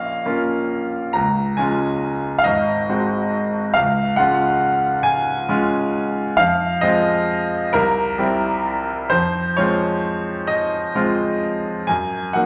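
A clear, smooth grand piano with a vintage tone and long sustain sits up front in this wistful, melancholic romantic nocturne, played alone in 12/8 with free rubato, moving from Bbm through Db and Ab7 to a darker Fm and C7 passage before settling on Ebm/Gb at 11.9 seconds, all wrapped in a wet recital hall reverb and vinyl crackle in a short excerpt cut from a longer piece.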